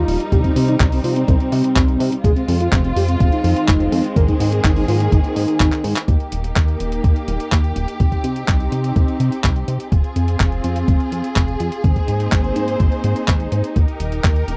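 A straight 4/4 pulse at 125 BPM drives this sunny, danceable italo disco clip in Ab major, anchored by a compressed, thumpy electronic kick from 0.3 s and a gritty, tape-warm sampler-style kit of handclaps and hi-hat, with a drum fill at 5.7 s leading into the second section at 6.1 s. Beneath it a glossy, dark synth bass with tube saturation and chorus plucks through a Cm, Fm, Abadd9, Eb progression, while a veiled, con sordino string section holds sustained chords. A round, octave-layered synth lead with chorus, tremolo and tape echo carries the melody only until 6.0 s, all captured in a dry, close 1970s-style studio sound.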